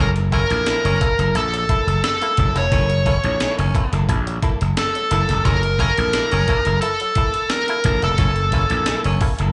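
Heard through a club PA with light room reverb and a dulled top end, this short funk excerpt at 88 BPM in straight 4/4 has an energetic, funky drive built on a single F#7#9 chord. Up front, a dark, nasal lead guitar with a parked wah and overdrive carries the melody between A4 and C#5, its picked notes trailed by slapback echo. Matching it in level, a growly, punchy slap bass with overdrive grinds low in the register, bright and direct. A compressed, pitched-up sampler-style breakbeat kit enters at 0.2 seconds, with a thumpy kick, medium-tuned snare and hi-hat carrying the grit of a large room. In the background, a raspy baritone saxophone with vibrato holds a distant second line on C#4, while a clean, hollow-body archtop guitar supplies dark picked accompaniment. A stringy, twangy auto-wah clav adds muted, overdriven stabs through a combo amp, and the saxophone, archtop and clav all carry slapback echo.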